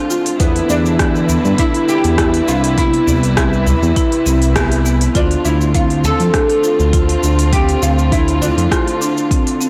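Up front, a smooth, detuned synth bass pumps alongside an electronic kick drum in this hypnotic, meditative organic downtempo groove with a light swing, while a bright, plectrum-plucked oud carries the melody through tape echo over woody soft-mallet marimba arpeggios, veiled muted strings sustaining dark chords, smooth hats, cabasa and rim clicks from an organic electronic kit, and a deep, saturated udu entering at 1.3 seconds, all set in a moderate echo-chamber reverb within a blown-out, overdriven recording that shares a band accent at 4.6 seconds.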